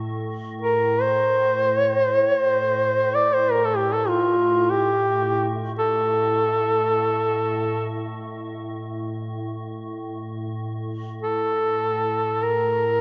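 Unfolding in free time, this solemn, longing Caucasian lament, cut from a longer piece, opens on an icy, crystalline glass pad drone with chorus and its own reverb sustained from 0.0 seconds, joined at 0.6 seconds by a mellow duduk singing a folk-style solo melody up front with vibrato and scooped notes, all bathed in a wet church reverb.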